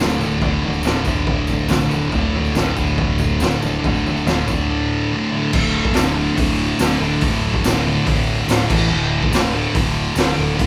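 The recording has the lightly reverberant sound of a band playing live together in one room, and it is cut from a longer piece. This is rowdy, raw garage rock with a straight 4/4 feel. A thick, bright fuzz guitar, picked and double-tracked, sits up front with a distorted riff built on a D5 chord, moving briefly to A5 at 8.7 s before returning. The acoustic drum kit is equally forward, saturated and gritty with a boomy kick, a medium-tuned snare, crashes, hi-hat and toms, its top end rolled off. Beneath them a growling, overdriven electric bass plays round, picked low notes in the background, while a jingly tambourine adds shimmer from far back. The music moves into a new section at 5.5 s.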